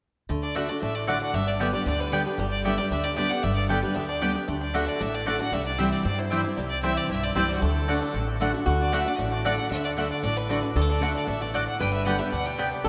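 Drenched in a wet cathedral reverb, this driving, lively bluegrass excerpt rings out as if played in a vast, echoing space, moving at a brisk 229 BPM in D mixolydian. A twangy, fingerpicked banjo and a clear, focused bowed fiddle with light vibrato carry the melody, while a full-bodied, up-front picked steel-string guitar with audible finger squeak, a woody pizzicato upright bass and a bright mandolin playing stabs fill out the band. At 8.7 s a nasal, metallic lap resonator guitar played with slide enters with a second line.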